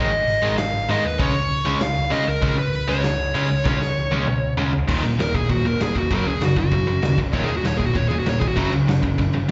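Punk rock played with urgent, angry energy, heard as a live club gig through the venue's PA, starting in half time before a drum fill from 3.7 to 4.9 seconds leads into a lead guitar solo. A dark, smooth lead guitar up front carries the melody with overdrive, slapback and tape echo, while an overdriven electric guitar and a bright, tight distorted guitar drive the riff in the background over a round, punchy hollow-body bass. A raw garage drum kit with a punchy kick, medium-tuned snare, hi-hat, toms and crash enters at 0.3 seconds, its top rolled off in a stone-room sound.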